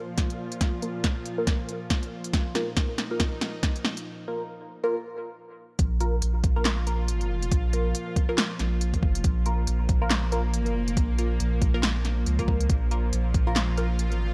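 A tense, string-like drone with its own reverb opens this dark, meditative deep dubstep excerpt, soon joined by an overdriven, knocking kick, a deep house kit of punchy snare, smooth hats and handclaps, and a nasal, filtered dub chord stab with phaser and dub echo whose filter sweeps through a build-up and drum fill into a short break, before a round, soft sub bass arrives with the drop at 5.8 seconds and carries the swung half-time groove to the end.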